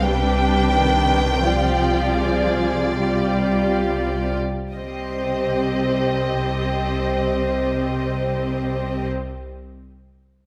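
Rubato in a slow 3/4 at 32-47 BPM, this melancholic, solemn C minor excerpt for string orchestra slows through its opening 4.7 seconds as a lush, focused violin melody sings over a sul tasto second violin line, an up-front, smooth viola accompaniment and a bass of portamento cellos and distant, soft-attack double basses, moving from G7/C to Cm at 4.7 seconds on a moderate scoring stage reverb.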